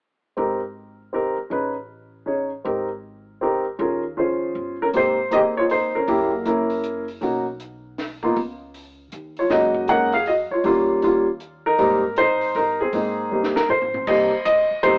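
Jazz piano trio in a sophisticated, warm waltz-time swing, where an up-front, natural-sounding baby grand carries the melody over woody, thumpy pizzicato upright bass through lush extended chords. A compact cocktail kit joins at 4.9 seconds with a dark, smooth tone, a high-tuned snare, a punchy kick and a rolled-off top, and plays a fill at 13.3 seconds. The band plays live in one small room with light reverb and a lo-fi AM radio character, in a fragment cut from a longer piece.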